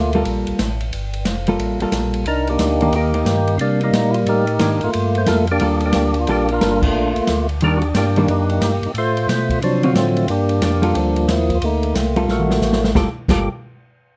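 A light reverb gives this late-night, soulful soul jazz organ trio clip an intimate feel, with the drum kit sounding airy and polished in a small room. The lead tonewheel organ sits up front with a fat, lightly overdriven tone, its third-harmonic percussion, vibrato and slow rotary speaker giving the melody bite once it properly enters at 2.3 seconds. A second tonewheel organ carries the bass line through its own slow rotary speaker, piping and scooped in character. A fingered hollow-body electric guitar supplies compressed, clean accompaniment with a dark tone, while the acoustic kit of ride, hi-hat, snare, toms, crash and boomy kick swings underneath with dusky cymbals and a medium-tuned snare. The harmony moves through minor ninth chords, a major seventh and an altered dominant, with a band accent at 6.8 seconds and a drum fill from 12.3 seconds leading into a new section just before the cut.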